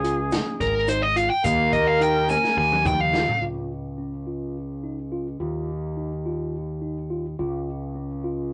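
In a straight-feeling 7/8, this bright, intricate progressive instrumental fragment sets growling, overdriven fingered bass and mellow, clean tine electric piano arpeggios under an open jazz kit with a dark, boomy kick, while a bluesy, distorted lead guitar soon takes the up-front melody. A smooth flugelhorn with vibrato and scooped notes adds a second line, and a grainy tube shaker sits in the background. After a drum fill from 2.3 seconds, the guitar, drums, horn and shaker have all stopped by 3.4 seconds, leaving the punchy bass and piano to carry the second section through a rough rehearsal-room sound with a short, wet booth ambience, warm saturation and muted highs.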